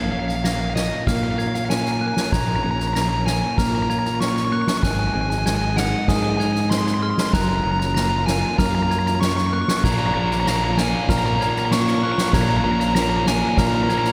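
A straight 4/4 pulse at 96 BPM drives this brooding, melancholic post-rock build-up in Bb minor, cut from a longer piece. A soft-mallet drum kit enters up front at 0.3 seconds with dark cymbals, a fat snare and a boomy kick over a growly fingered electric bass, while an up-front crunchy overdriven guitar carries the melody through slapback and tape echo. Around it, a twangy clean electric guitar and a bell-like glockenspiel with hard plastic mallets play arpeggios in the background, and a very quiet, lush symphonic string section sustains chords moving from Bbm through Ab and Gbmaj7. At 9.8 seconds a thick, bright fuzz guitar riff joins with distortion and slapback echo, and the mix sits in a moderate hall reverb that gives a big arena sound.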